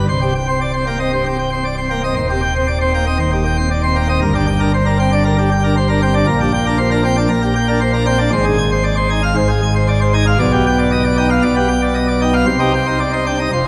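A classical organ toccata in C minor, this stormy, dramatic passage moves at 116 BPM in a straight 4/4. A solo pipe organ on full plenum carries the whole piece, its baroque voicing and mixtures giving a brilliant, full sound with audible chiff at the start of each note. The organ sits up front and spans from a deep C1 to Ab5 at the top. The harmony travels from C minor through G minor and F minor to a G7 chord over B before returning to C minor at 12.5 seconds. A wet church reverb with a long tail surrounds the instrument, and the recording is cut from a longer piece, ending at 13.7 seconds.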